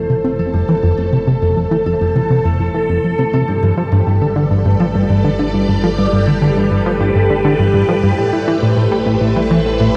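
A bright, swirling string machine holds chorused, phased chords over a punchy, funky analog bass riff that fades in through echoing delay, with a round, deep sub bass and a ringing, fingerpicked concert harp playing delayed arpeggios in the background, as this mysterious, hypnotic stretch of sequencer-driven space music at 102 BPM moves from F to Gadd9 at 3.5 seconds and Am7 at 8.2 seconds, all bathed in a vast cathedral reverb.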